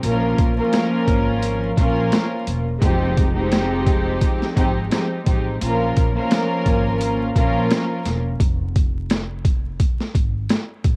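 Up-front bowed strings, soft in attack and floating with a pure sul tasto tone and a cassette-tape haze, carry this dark, reflective boom-bap hip-hop excerpt over Bbm and Fm7 until they drop out at 8.2 s, while woody pizzicato upright bass and a gritty, compressed, pitched-down sampler-style kit with a thumpy kick, high-tuned snare and swung hi-hat run on through 11.0 s in a small room coloured by vinyl crackle.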